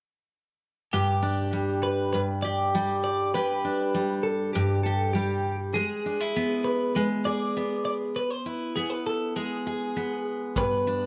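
A straight 4/4 pulse at 100 BPM carries this carefree, easy-going acoustic pop passage in G major, cut from a longer piece. From 0.9 seconds a full-bodied, up-front picked steel-string acoustic guitar holds the accompaniment while a bright, twangy, compressed twelve-string electric guitar plays the melody, the harmony moving from G to E/G# at 5.7 seconds. At 10.6 seconds a distant, roomy shaker and tight kick drum with brushes and a rolled-off top come in briefly, all in a dry mix that carries some lossy compression artefacts.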